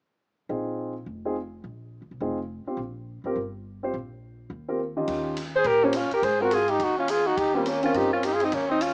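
Swinging and playful, this brief cut from a longer small-group jazz piece moves in a brisk 4/4 with a swung eighth-note feel. An intimate concert grand piano, up front with audible action noise, deep bass and long sustain, comps alongside a woody, thumpy upright bass played pizzicato. At 5.1 seconds a big-band drum kit joins on hi-hat, ride cymbal and a punchy kick, heard in a natural big room. At 5.6 seconds a breathy alto saxophone takes the lead up front, its subtone and scooped notes giving it a vintage jazz character, while a trumpet with vibrato and a soft attack carries a present second line. The piano drops out at 8.2 seconds as the harmony moves through dominant and sixth colours. A wet reverb and a rough home-demo mix lend the whole a small-speaker sound.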